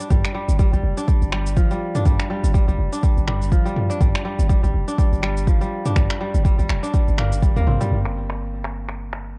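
A crisp, ringing fingerpicked kora opens this hypnotic, warm afro house passage cut from a longer piece, its sidechain-pumped arpeggios trailing tape echo over an overdriven, muffled deep house kit of cabasa, finger snaps, toms and crash. A boomy, mellow sine-based 808-style bass and an up-front, overdriven deep electronic kick join almost at once, the kick dropping out at 7.5 seconds as a drum fill leads to a chordless close from 7.9 seconds, all in the hazy character of a small-room cassette home recording.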